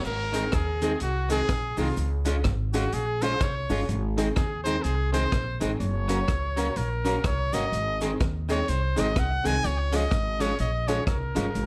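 Swung eighths in four drive this cheerful, upbeat ska excerpt, where a bright, up-front trumpet with vibrato solos throughout over a woody, thumpy pizzicato upright bass, a vintage drum kit of punchy kick, hi-hat, rim click and crash, a very quiet grainy cabasa, a twangy, slightly broken-up electric guitar and clear, slightly detuned upright piano stabs, with slapback echo and plate reverb on the trumpet, guitar and piano in a dark, warm production.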